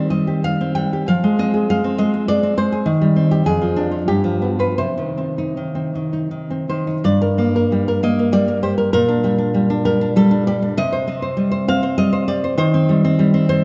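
Passionate and melancholic, this romantic piece for solo classical guitar moves in a lilting three-beat metre with a free, rubato feel that lets phrases breathe and stretch. A single fingerpicked nylon-string guitar carries everything, its woody, full-bodied tone coloured by old strings and ranging from deep bass notes up into the high register. The guitar sits up front and is touched with a tape echo, while a generous recital hall reverb wraps it in a dark, enveloping space. The harmony leans on minor chords, passing through a diminished chord and a dominant seventh before resolving, and a second section opens at 7.0 s with a fresh harmonic colour. The fragment is cut from a longer piece and ends at 13.6 s.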